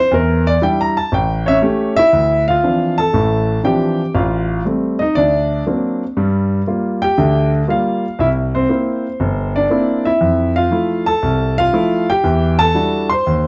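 A concert grand piano carries this smoky, moody solo jazz excerpt on its own, sitting up front with a warm, intimate, natural tone, deep bass, long sustain and audible action noise as it ranges from G1 to C6. At 119 BPM in 4/4 with a swung eighth-note feel in D minor, it opens on a brief Em7b5 to A7 turn before settling at 2.1 seconds into a longer passage moving through Dm9, Am7b5, Daug7, Gm7, C7 and Fmaj7 to land on Em9. Light reverb and a dark, warm production keep the mood close and smoky.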